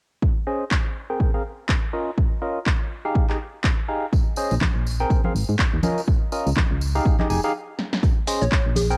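A tape-warm electronic kick opens this soulful, bittersweet piano house excerpt at 0.2 seconds, joined by a hollow, nasal organ stab riff with chorus and sidechain pumping that rides a filter sweep over a Bbm11, Abmaj9, Db69, Fm9 cycle in Bb dorian, while a punchy analog drum machine adds handclaps, hi-hat, shaker and snare at a swung 123 BPM, re-recorded in a large room. Acoustic tambourine and congas from a small room come in at 4.1 seconds, and a round, dark FM bass enters up front at 4.5 seconds, pumping with the sidechain. After a brief stop and drum fill, a bouncy, detuned square-wave pluck with chorus arrives at 8.4 seconds, all set in light reverb with the lo-fi character of a home cassette recording.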